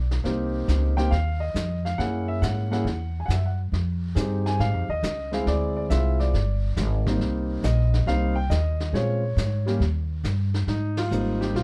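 Jazz piano trio in 4/4 with a swinging, playful feel, cut from a longer piece and framed by a dark, warm production with little reverb. An open concert grand with deep bass and long sustain carries the melody up front over woody, pizzicato upright bass, while a vintage brush kit with dark cymbals and a tight kick sits mid-forward at a lower level. The harmony moves from Cm7 through chords like Gb9 and Dm7b5, arriving at Abmaj9 just before a band accent at 10.9 seconds.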